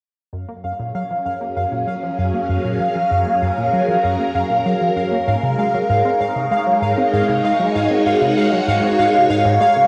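Ambient, sequencer-driven space music at 97 BPM in Gb major, cosmic and expansive in mood, moving from Gbmaj7 to Ab7sus4 at 5.3 seconds in this short section cut from a longer piece. A swirling, vintage string machine holds sustained chords with ensemble chorus and phaser, while a tight, driving sequenced synth with a detuned sawtooth-and-square filter pluck plays a riff beneath it, and both fade in from 0.3 seconds. A pulsing, tempo-synced gated texture with a bright triangle tone holds a high F5 up front from 0.7 seconds, all set in a wet studio reverb with the character of a home cassette recording.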